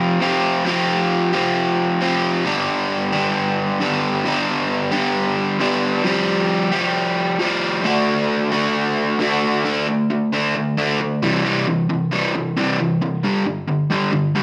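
A moderate reverb from a large studio surrounds an up-front, double-tracked electric guitar, its hollow-body tone pushed into overdrive and picked with a sunny, confident rock swagger at 134 BPM in G mixolydian. Alone for the whole cut, from 0.0 to 14.4 seconds, it ranges from G2 to G4 over a straight 4/4 feel, moving through Fsus2, G and D before a new passage at 9.7 seconds shifts to D5, C and a closing G5. Tuned slightly sharp to A4 = 441 Hz, the recording carries the open feel of a band playing live together in one room.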